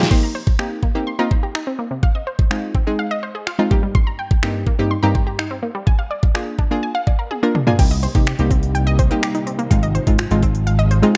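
A driving, confident dance-pop excerpt opens with a round, full-bodied analog pluck carrying the accompaniment beneath a lush, detuned unison pluck spinning arpeggios through digital delay, both pumping against a tape-warm pop drum kit with a knocking kick, fat snare and crisp hats, until a drum fill at 7.3 seconds ushers in an amped, envelope-filtered slap bass and mellow, slow-swelling string-machine cellos with ensemble chorus at 7.8 seconds, all in a dry mix.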